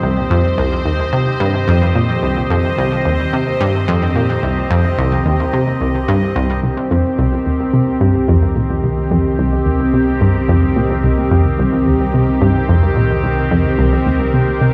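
A wet concert-hall reverb with a long 2.3-second tail surrounds this hypnotic, cosmic excerpt of sequencer-driven ambient space music, set in C minor at 109 BPM in a straight 4/4. Up front, a round, detuned sawtooth analog pluck with a fast attack and bright, decaying filter pluck plays a low riff through chorus and tape echo, while an evolving, morphing wavetable pad built on a sine tone holds full-bodied, vintage chords with a slow attack and long release. Deeper in the mix, a bubbling, resonant stepped-filter texture glitters with random filter steps, colored by chorus and built-in reverb. The harmony moves from C minor to Cm7 at 6.6 seconds, where a filter sweep on a synth arpeggio sound begins and runs to the end. At 7.9 seconds, a warm, warbling analog drone enters in the background, holding a low C with a pulse-width-modulated sawtooth and pulse-wave tone.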